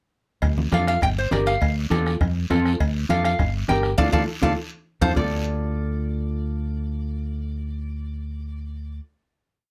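This whole piece is Latin cumbia at a driving, danceable 203 BPM in D minor, cycling through D minor, G minor and F chords. From 0.4 seconds a round, punchy fingered electric bass sits up front with a cumbia figure. Acoustic percussion enters alongside it: a soft-beatered bombo with kick and rim, medium-tuned congas in the background, a very quiet cowbell and timbales, and a raspy, compressed guiro scraping long and short strokes. Over this, a metal-body resonator slide guitar carries the melody in call phrases, its fingerpicked tone bright and nasal, while a dark, clean electric guitar plays triad chords underneath. A band accent and drum fill close the groove, and the percussion stops at 5.2 seconds as the bass and guitars settle on a final D minor chord under light reverb.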